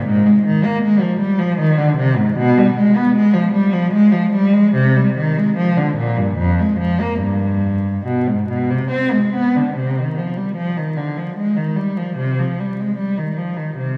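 This is a classical, baroque-style suite movement for unaccompanied cello, grave and solemn in C minor, tuned slightly high at A4 = 441 Hz. It moves in a slow, rubato 3/4 at around 68-79 BPM. A single bowed cello carries everything across the 14-second fragment, ranging from F2 up to C4 with a rich, smooth tone and vibrato. The playing sounds even and sits up front, though a hint of distance hangs about it. A long church reverb of about 2.9 s surrounds the instrument, and a vinyl crackle adds an aged patina. The music shifts into a new section at 9.8 s, and the clip is cut from a longer piece.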